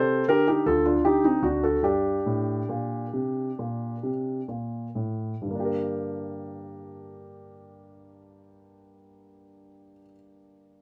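An up-front grand piano with a warm tone, deep bass and light reverb opens this short cut from a longer classical piece, a baroque-style suite movement in G minor and 4/4. Played solo with introspective, flowing rubato between 63 and 84 BPM, the piano ranges from D2 to C5 and slows through its first 5.4 seconds as the harmony moves from G5/D to D7 and settles on G minor. A second section follows and runs to 9.2 seconds.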